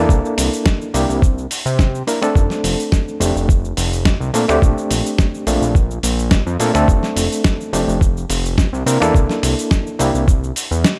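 A thumpy, compressed electronic kick drives this sunny, feel-good nu-disco excerpt, joined by a dusty soul sampler-style kit of finger snaps, hi-hat, shaker and a medium-tuned snare in studio reverb, a fat, detuned sawtooth analog bass with tube saturation, and a reedy, overdriven electric piano through a combo amp with fast tremolo, sidechain pumping and analog delay, moving across C9, F6 and Bbmaj9 chords.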